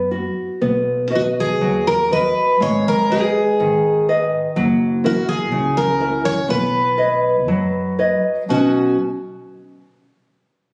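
A picked twelve-string acoustic guitar carries the melody up front, its jumbo body giving a full-bodied, shimmering, octave-doubled tone in a nostalgic, tender fado-style ballad cut from a longer piece. Beneath it, a small, fingerpicked nylon-string guitar supplies warm accompaniment, also close and present. An upright bass played pizzicato on gut strings adds a woody, dark, thumpy low end. The rubato feel in 2/4 lets the harmony drift from B through G#m and F#7 to a resting Badd9 by 6.5 seconds, and all three parts play together until 9.0 seconds. The sound carries a moderate recital hall reverb with an added club ambience and compression, caught on a phone in the room.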